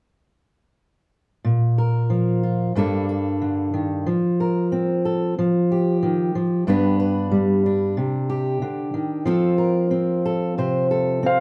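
In a straight, steady 4/4, this hopeful, nostalgic folk fragment from a longer piece rests on a dark, fingerpicked steel-string acoustic guitar sitting close and present from 1.4 seconds, moving through Bb5, Gmadd9, F, Ebadd9, G, Cmadd9 and F, before a warm concert grand piano with deep bass touches in a brief high melody at 11.3 seconds, all heard as a band playing live in one large studio room with a wet reverb.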